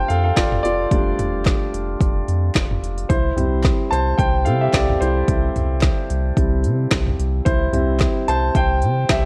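A concert grand piano and a round, sine-like sub bass open this piano-driven pop excerpt together, with the intimate, up-front piano taking the lead throughout and showing audible action noise and long sustain. A layered deep house drum kit with a deep kick, woody snare and smooth hats enters at 0.1 seconds, joined at 0.4 seconds by a crisp, very quiet group handclap, all over a lightly swung sixteenth-note feel. The warm, anthemic mood is heard through light reverb and a worn, warbling cassette-tape character with pitch drift.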